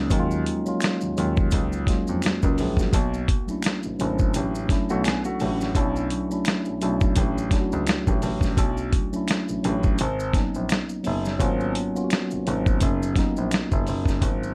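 A mellow tine electric piano, clean and heard through its built-in speakers, opens this late-night neo-soul R&B excerpt at 85 BPM together with a concert grand piano carrying the bass in a deep, intimate register where its action noise is audible, moving through Ebm9, Bm9 and Abm9 chords. A gritty, compressed sampler-style drum kit with a thumpy kick and medium-tuned snare sits up front in a swung 16th-note groove, while faint maracas and finger snaps add a live-room touch. A dark, fingered electric guitar slips in briefly from 4.9 to 6.3 seconds, all within a smooth, dry, dusky production.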